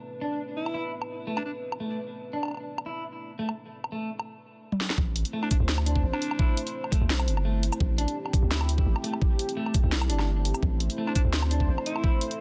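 A dark, detuned analog pad with a filter sweep and sidechain pumping opens this tense, cinematic half-time drum and bass excerpt in A minor at 170 BPM, joined by slightly broken-up electric guitar arpeggios through digital delay, brief raspy alto saxophone phrases with tape echo, and an overdriven kit of cracking snare and bright hats, until a drum fill at 4.7 seconds leads to a drop at 5.0 seconds where a deep, sine-toned 808-style bass and a knocking electronic kick arrive up front in a dense, heavily limited mix.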